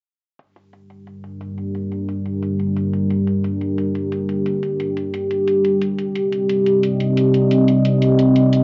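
Dark technical drum and bass at 177 BPM in G minor, cut from a longer piece, where a deep, moody pad of detuned sawtooth and wave-folded, ring-modulated tones with a sub octave sits up front, sustaining chords from Gm to Cm at 5.8 s through chorus and reverb, while faint overdriven, layered electronic hi-hats, entering at 0.4 s and re-recorded in a small room, run under a filter sweep, all tense and dusky in a moderate digital reverb with a muffled top end.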